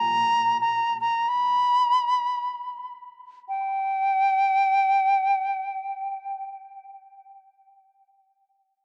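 Deep and late-night in mood, this short amapiano fragment, cut from a longer piece, floats in free time around a single mellow silver concert flute carrying the melody from 0.0 to 6.4 seconds. The flute sits up front and stays within a narrow span from G5 to B5, its pure metal tone shaped by expressive vibrato and a crisp attack. Its highs are rolled off, cassette tape coloring tints its sound, and an analog delay trails behind its phrases. The music moves through two brief sections, with a change at 3.5 seconds before the second closes at 5.7 seconds. Light reverb and the intimate character of a home cassette recording give the whole fragment a hushed, close feel.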